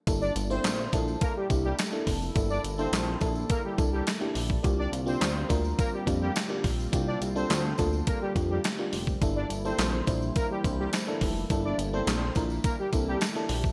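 A detuned 8-bit drum machine with thumpy kick, snare, hi-hat, handclaps and gated reverb sits up front in this funky, danceable early-eighties boogie funk excerpt at 105 BPM in G dorian, joined by a glossy chorused synth bass, a lush FM electric piano with a soft pad layer and phaser, a very quiet, shimmering pulse-width pad, a bold, nasal analog synth brass line with digital delay from 0.2 to 13.2 seconds, and a jingly tambourine in the background, moving over Gm69 and C9sus4 chords in a bright 1980s-style digital production with light reverb.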